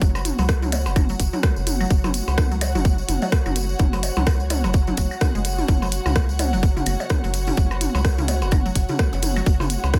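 Hypnotic and clinical, this minimal techno excerpt runs at 127 BPM in 4/4 with a 58% swing on the 16ths, built on a tight, overdriven electronic kick that sits up front beside a rubbery, hollow square bass pumping from the sidechain around F#1 to C#2. A dark, bowed string section with light vibrato and a soft attack holds a close, intimate bed, while a jingly, close and dry tambourine, tape-toned claves, blips and toms, and a clicky kit of hi-hat and rim click, both echoing through analog delay, fill in the groove. In the background a juicy, squelchy blip pluck with chorus and delay enters at 0.4 seconds, and a very quiet zap flickers at 9.1 seconds, all set in an echo-heavy mix with light reverb and digital ambience.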